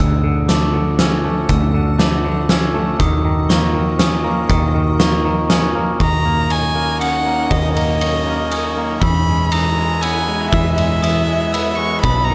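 A twangy, clean-picked electric guitar with spring reverb and tape echo arpeggiates alongside a sparkling glockenspiel struck with brass mallets and a round, hollow-body electric bass, with an icy, crystalline pad sustaining chords in the background and a gritty, oversized low-tuned drum kit with a punchy kick and fat snare arriving up front at 0.5 seconds. This hopeful, soaring post-rock passage in 3/4 moves from Dmaj7 through D#m7 to E, cut from a longer piece with a dark, warm production and light small-room ambience. At 6.0 seconds a close, focused solo violin enters with vibrato and tape echo, carrying the melody above the guitar's arpeggios.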